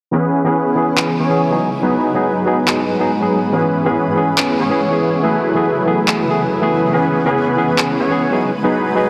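Lush and emotional, this future bass excerpt moves at 141 BPM in a half-time feel in C# minor, with a smooth, detuned supersaw riff up front, a barky, lightly overdriven tine electric piano under a filter sweep, a shimmering, ethereal pad with octave-up shimmer entering at 0.9 seconds, and overdriven electronic handclaps from 1.0 to 7.9 seconds, all set in a huge ambient reverb and a dense, heavily limited modern master over chords moving from C#m7 through G#m7 and F#m11.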